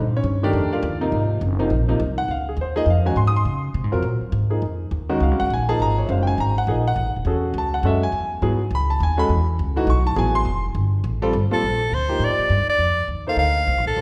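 Set in the lush, wet reverb of a church or concert hall, this fragment of a longer modal jazz piece moves at a swinging 206 BPM in Db major with a hypnotic, searching mood. A woody pizzicato upright bass opens at 0.0 seconds and a clear, slightly worn concert grand piano with deep lows joins almost at once, both sitting up front as the harmony drifts through rich major-ninth colours. At 11.5 seconds a bright, close-miked soprano saxophone steps forward as the solo voice, its light vibrato carrying the melody into the new section.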